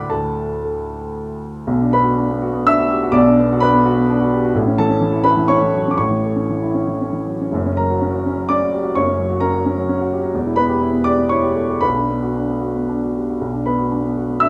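A woody upright piano plays alone and up front, its natural tone and long sustain carried by a moderate recital-hall reverb across a range from E1 to F#6. This wistful, reflective piece of neoclassical minimalism moves in a rubato three-four, drifting from D to Bm, then through A, F# and Em before returning to Bm at 11.8 seconds. The 14.5-second excerpt is cut from a longer work.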